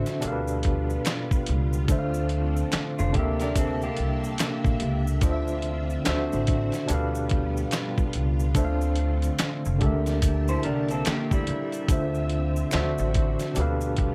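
Neo-soul R&B at 72 BPM with a swung sixteenth feel, soulful and introspective, cut from a longer piece and cycling through a G9/D, F6, C13, Dm9, D9 progression. A barky, overdriven tine electric piano with fast tremolo sits up front over a compressed, sampler-style drum kit with a thumpy kick, handclaps and a tape-warm grit, while a woody, growly pizzicato upright bass anchors the low end and a lush string machine with ensemble chorus holds sustained chords beneath. Maracas and finger snaps add a faint live-room sparkle, and a slightly broken-up, lo-fi electric guitar through a small old amp slips in a second line at 3.0 seconds and again at 10.5 seconds, all under light reverb.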